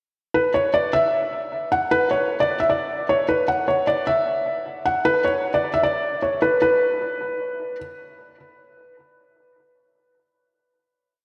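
A felt-muted upright piano plays a looping melody alone from 0.3 seconds, soft, mellow and intimate with audible action noise and short sustain, sitting up front under analog delay in a lush 3.0-second hall reverb, giving this melancholic, menacing half-time hip hop piece in B minor at 153 BPM a dreamy, reverb-soaked hook before its final note rings out from 6.6 seconds.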